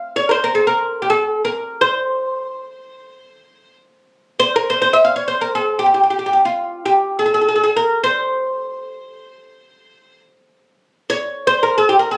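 Warm and stately, this short excerpt of makam ensemble music features a solo oud, woody and fretless with plectrum-plucked double strings, sitting up front across its 12.2 seconds in a moderate studio ambience, captured on a phone in the room with some compression.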